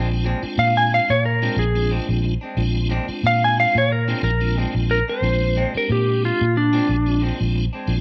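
Rollicking and swaggering, this swung 4/4 blues fragment at 90 BPM in Bb mixolydian sits on a Bb9 chord, with a dark, up-front lap steel guitar melody, played with fingerpicks, slide and volume swells, taking the lead from 0.6 s over a round, foam-muted vintage fingered electric bass, warm picked stabs from a clean electric guitar, and a piping, scooped tonewheel organ with key click, chorus vibrato and a slow rotary speaker, inside a moderate spring reverb.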